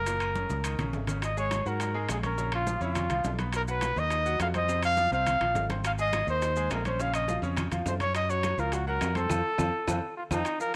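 Salsa at a brisk 208 BPM in Bb minor, passionate and danceable: a warm, up-front solo trumpet with light vibrato carries the melody over a brilliant grand piano with audible action noise and long sustain, a direct fingered electric bass, background congas, very quiet saturated bongos, ringing metal-shelled timbales and close, grainy maracas, while distant woody claves tap briefly at the start and return at 5.8 seconds, and drum fills recur throughout, the last one arriving during a band accent that begins at 9.3 seconds in this short cut from a longer piece.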